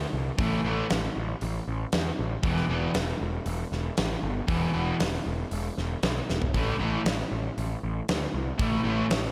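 Heavy and menacing, this hard rock excerpt at 117 BPM in A minor opens with a growly, fuzz-drenched picked electric bass at 0.0 seconds, joined at 0.4 seconds by a dark, double-tracked overdriven guitar riff moving between A5 and E5 chords and a big, smooth rock drum kit with a fat snare, punchy kick and rolled-off top, all placed up front in a lush hall reverb that gives an arena-sized sound, with a drum fill at 6.3 seconds.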